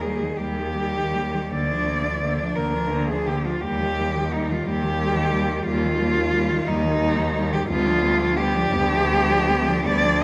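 A rich, expressive cello sings the melody up front with vibrato and portamento, joined by a clear, focused second cello in the background, a bowed cello accompaniment and a soft-attacked bass cello, in a solemn, elegiac classical passage for cello ensemble in a rubato 12/8 at 50-60 BPM, moving from Eb through Bb/D to G7/D within the long reverb of a recital hall.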